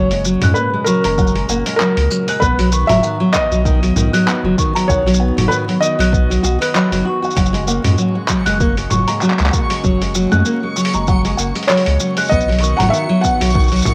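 A muted, intimate felt piano carries the melody of this hopeful, delicate folktronica excerpt at 97 BPM in F# major, falling silent at 7.0 seconds and returning at 11.7, over fingerpicked nylon-string guitar arpeggios with finger squeak, sampler grit and tape echo, a round sine sub bass, a smooth, chorused analog pad in the background, a tinkling music box second line, a muffled, compressed sampler-style kit of handclaps, hi-hat, shaker and toms, a deep electronic kick, and, from 8.1 seconds, a dreamy, bright reversed granular texture, all set in spring reverb on a home cassette recording with vinyl crackle.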